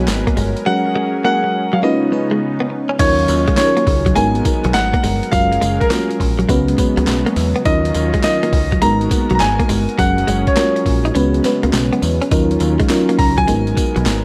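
A clear, polished concert grand piano carries the melody up front in this bouncy, slick new jack swing excerpt, riding a swung groove from a gritty, pitched-down boom bap drum kit with a thumpy kick, high-tuned snare, handclaps, tambourine, hi-hat and crash. Beneath it, a dreamy FM electric piano with chorus and tremolo and a warbling analog pad in the background fill out minor ninth and major ninth chords, while a clean, scooped electric guitar plays a riff drenched in lush chorus. A round, dark picked bass anchors the low end, and the kick drops out briefly from 11.2 to 12.3 seconds in a light digital ambience.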